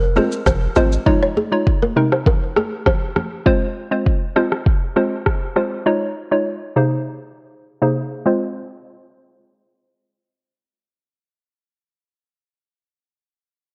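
The recording has a light reverb and the worn, warbly pitch drift of old cassette tape, dulled by a low-pass filter, with a filter sweep running through the first 8.3 seconds. This short afrobeats cut is hypnotic and smooth, circling through Fm, Dbadd9 and Abadd9/C. A punchy sine sub bass with a pitch-drop attack sounds only in the opening second, while a hollow, bouncy square-wave pluck with chorus carries the accompaniment until 11.5 seconds, its detuned, vintage tone mellow and up front. A woody, close-miked balafon struck with soft rubber mallets plays a brief riff treated with digital delay, and an electronic afro-pop kit with a deep kick, rim click and shaker stops at 5.7 seconds. Bright, high-tuned congas sit in the background early on, and a new section arrives at 8.3 seconds.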